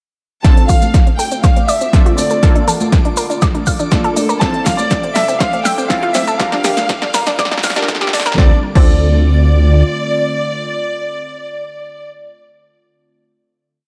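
Light reverb and a high-pass filter shade the whole mix of this dreamy, emotional progressive house piece at 121 BPM in D minor, which runs as a single build through Dm7, Bbmaj7, Fmaj7/A and Gm7 before landing on a held Dm7 at 8.4 seconds. A bright, brilliant baby grand piano carries a motif-based melody under a filter sweep, doubled in unison by a rich, distant violin section with smooth vibrato; both pump against the kick and trail digital delay. Up front, a punchy four-on-the-floor electronic kick drives a deep, rumbling detuned saw bass in rolling sixteenths, while an overdriven dance kit adds crisp hats, a snare backbeat, crash and a drum fill. A nasal, wave-folded analog pluck spins a chorused arpeggio that is also swept, a lush unison pluck pushes syncopated close-voiced chords through a phaser, and an evolving wavetable pad morphs in the background from 1.2 seconds. Tape-warm congas, grainy hand-played maracas and a very quiet reversed, granular swell on a high note fill out the texture; the drums fall away by 8.9 seconds, the pad fades out at 11.7 seconds, and the piano, violins and unison pluck sustain to the end.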